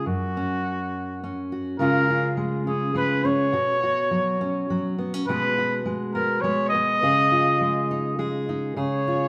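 A mellow trumpet with light vibrato and a fingerpicked, full-bodied dreadnought guitar open this gentle, pastoral acoustic folk duo in an unhurried waltz-time 3/4. The trumpet sings a solo melody in a classical style while the guitar accompanies with a warm tone, and at 1.8 s the piece moves into a new section that drifts through C#, Bsus2, G#m7/B and C#add9. Both parts sit up front, bathed in a moderate, large studio reverb that lends the horn a distant, roomy air in this short cut from a longer piece.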